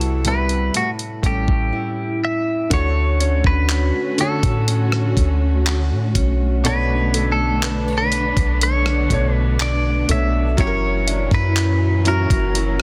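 Contemporary R&B with a longing, sensual mood, moving at a slow, unhurried pace in this short cut from a longer piece. A bright, twangy clean electric guitar carries the melody through tape echo, over a clear, vintage-toned grand piano and a boxy, parlour-style fingerpicked acoustic guitar playing arpeggios, also with tape echo. Underneath, a deep, round 808-style bass and a gritty sampler-style drum kit of thumpy kick, hi-hat, rim click and handclaps sit up front, the snare roughened by soft clipping. After a brief silent gap from 1.7 to 2.7 seconds, a lush studio string section enters with expressive vibrato and portamento, and a very quiet, woody synth pluck with chorus and phaser adds texture from 3.2 seconds. The harmony shifts from Cmaj7 and A7 to a long Bm9 before turning to F#7 near the end, all set in studio reverb with a dense, heavily limited modern master.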